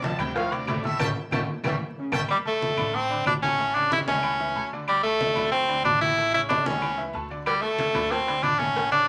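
A driving, straight salsa groove in four opens this passionate excerpt, with thick, low-tuned congas, ringing agogo bells and timbales, a round vintage cowbell and a dark, thumpy pizzicato upright bass on gut strings sitting back in the mix, joined a moment later by dry woody claves. A punchy trumpet section and a close-miked trombone section carry the opening line over a band accent and drum fill, dropping out by 2.2 seconds, before an edgy, forceful tenor saxophone takes the solo up front from 2.3 seconds with vibrato. Throughout, a bright, worn and slightly detuned upright piano with audible action noise fills the accompaniment, framed by moderate studio reverb and a layer of vinyl crackle.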